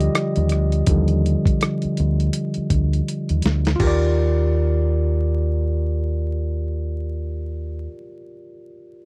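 R&B with a neo-soul lean, this short excerpt cut from a longer piece has a sensual mood and a swung sixteenth-note feel over a lush Ebmaj9 chord. A barky tine electric piano, bright and clean through a combo amp, sits up front and takes a solo from the start. Beneath it, a deep dub fingered electric bass adds a dark, round low end, played direct and amped. A dusty, sampler-style soul drum kit brings a thumpy kick, a medium-tuned snare, rim clicks, hi-hat and crash, all compressed and overdriven into a gritty texture, with a fill at 3.1 seconds before the drums stop at 4.0 seconds. The bass drops out at 7.9 seconds, leaving the electric piano to ring on until 9.1 seconds, all captured as a dry, close 1970s-style studio recording with a bed of vinyl crackle.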